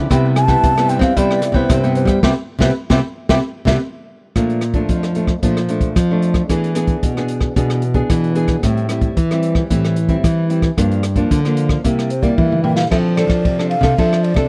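Playful, sunny samba and choro at 112 BPM in C major, where fingerpicked classical nylon-string guitar chords and a dark, small-sounding nylon-string bass line sit up front beside a smooth jazz kit with a boomy kick and drum fills, while a crisp picked cavaquinho plays only until 3.8 seconds, a band accent lands near the opening, and an airy, hollow bansuri sings with vibrato and tongued notes at the start and again from 12.1 seconds, caught in a dry, close 1970s-style studio recording with small room ambience and cut from a longer piece.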